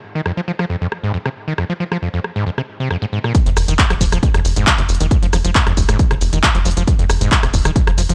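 A squelchy, screaming acid line opens this relentless, hypnotic peak-time techno cut, its resonant sawtooth pushed through distortion, chorus and analog delay with a sidechain pump, joined almost at once by a dry, up-front analog drum machine of handclaps, hi-hat, rim click and shaker whose hats and percussion also pump. At 3.3 s the drop arrives as a heavy, layered kick drum lands, followed moments later by a tight, plucky sequencer bass with a moving notch. The whole piece carries a gritty hardware-and-cassette character with very little reverb.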